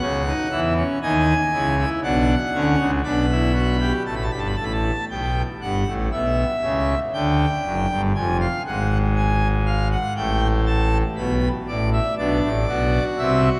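Classical baroque-style three-part fugue for solo pipe organ, heard in a short portion cut from a longer piece. The mood is lively and joyful, moving at a steady 59 BPM in 4/4 with a straight feel. The full organ with mixtures sits up front, sounding majestic and brilliant with a romantic voicing that spans from a deep F1 to a gleaming B5 at the top. The harmony shifts through chords such as C#madd9, Bm, Em/B, Fm and A9sus4, with a second section arriving at 4.1 seconds and carrying through to the close at 13.6 seconds. A wet cathedral reverb with a 5.0-second decay places the instrument in a vast, echoing space, letting each chord ring and bloom around the lines.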